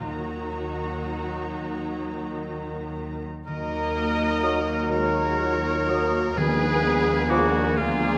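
Yearning and solemn, this slow romantic orchestral passage in Eb minor moves in a rubato 6/8 at roughly 34-43 BPM. It opens with veiled, con sordino violin sections carrying the melody and a second line over muted violas, cellos and double basses, with a faintly ringing fingerpicked harp. At 3.5 seconds a bright, close-miked solo oboe takes up a second line as mellow trumpet stabs and sustained chords from warm horn and trombone sections join, soon followed by a pure, straight-tone flute ensemble, a mellow bassoon and a dark, very quiet clarinet; very quiet timpani enter at 6.4 seconds as the harmony shifts from Ebm to Ddim7/Eb, within a wet recital hall reverb.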